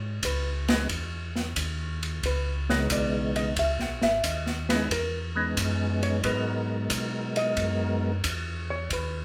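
This smoky, soulful soul jazz organ trio opens on a clean, fingered hollow-body electric guitar over a round organ bass line with key click and slow rotary speaker, swinging at 90 BPM in G# minor on a single G#m7 chord. An acoustic drum kit with dark cymbals and a boomy kick sits up front from 0.2 s, and at 0.7 s a mellow, percussive tonewheel organ melody enters with third-harmonic percussion and chorus vibrato through a slow rotary speaker. The band plays live in one large studio room with moderate reverb, in a short excerpt cut from a longer piece.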